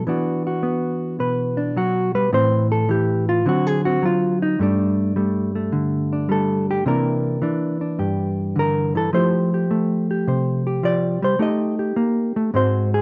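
Solo jazz at 106 BPM in 4/4, playful and swinging with a firm swing on the eighth notes, this short cut from a longer piece features a lone hollow-body electric guitar, dark and clean, fingered up front across a range from G2 to Eb5. The harmony moves from E7sus2 through Am, D7b9, Gsus2, C9 and Fmaj9 before landing on Eb near 11.4 seconds. A moderate large-studio reverb gives the guitar a roomy halo.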